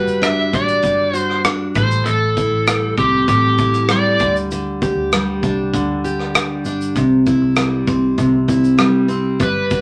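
Acoustic pop at 98 BPM in a carefree, sunny mood, with a full-bodied, up-front picked dreadnought acoustic guitar playing through Gmaj7, Am7, Dsus4 and C, a bright overdriven slide guitar played with fingerpicks carrying the melody until 4.3 seconds and returning at 9.4 seconds, a dark, round, foam-muted vintage bass sitting in the background, and a studio drum kit with a punchy kick, rim click and shaker in a pumping room, all under a wet studio reverb.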